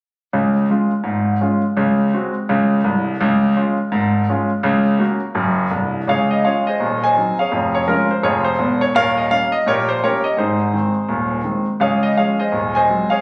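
Stride jazz piano at a brisk 167 BPM in 4/4, swung on the eighth notes and set in Db major, this short cut from a longer piece has an exuberant, playful mood. A single clear concert grand carries everything as a solo from 0.3 to 13.2 seconds, ranging from C1 up to Ab5. Its tone is polished and present, with a deep bass, short sustain and an up-front placement. The harmony moves through Db, Ab7 and Gb over a Db bass in the opening stretch, then shifts at 6.1 seconds into a second section that touches Eb7 and Ab before returning home to Db. The sound was captured on a phone in the room, with a wet club reverb and compression.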